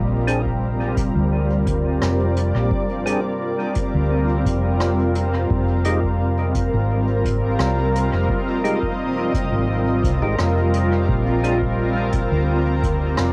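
A straight 4/4 groove from a deep, tape-softened electronic kick and a jazz brush kit of hi-hat and rim click, the brushes dusted with dub echo, carries this spacious, deep ambient dub fragment, cut from a longer piece and recorded at home on cassette with light reverb. Underneath, a dark, round hollow-body electric bass sits beneath a bright, up-front granular cloud pad that blurs and evolves through sustained chords moving from Bb to Fm7 to Bb7. A fat, clean tonewheel organ adds percussive stabs with key click, chorus vibrato, a slow rotary speaker and dub echo from 0.3 s to 11.6 s.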